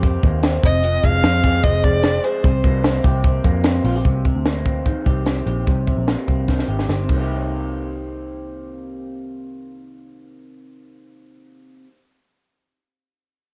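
A dark, expressive bowed violin carries the melody from 0.7 to 3.0 seconds with vibrato and portamento, floating over this wistful, bittersweet excerpt of jangly indie pop in C minor at 148 BPM. Beneath it, a slightly broken-up, twangy guitar from a small old amp picks arpeggios with subtle chorus, a foam-muted, round, punchy picked bass holds the low end, and a compact cocktail kit with a high-tuned snare and tight kick sits up front until a drum fill closes its part at 7.2 seconds. The dry home cassette recording gives the whole piece a lo-fi, intimate character.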